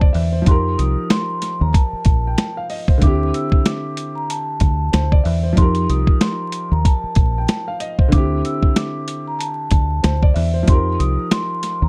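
A dry, dark mix dusted with vinyl crackle carries this tough, gritty boom-bap hip-hop piece at 94 BPM with a swung feel, where a compressed, pitched-down sampler kit with 12-bit grit, a thumpy kick and a high-tuned snare sits up front beside a round, punchy fingered electric bass, a mellow concert grand with audible action noise plays F9sus4 and D9sus4 chords, and a soft-mallet vibraphone with slapback echo enters at 0.5 s to carry a metallic, ringing melody.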